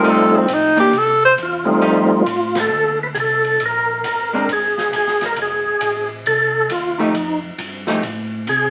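A breathy, whispered tenor saxophone opens this greasy, bluesy soul jazz organ trio with a short solo of scooped, vibrato-laden notes that ends by 1.3 seconds. Alongside it, a fat, lightly overdriven organ with key click and percussive attack carries the melody through a slow rotary speaker, while a dark, hollow-body archtop guitar comps cleanly and a mellow, round organ supplies the bass. An airy big-band drum kit swings at 135 BPM in F over F9 and Bb7(no3) chords, with a band accent at 2.5 seconds, all heard through the crackle of a very old 78 rpm record.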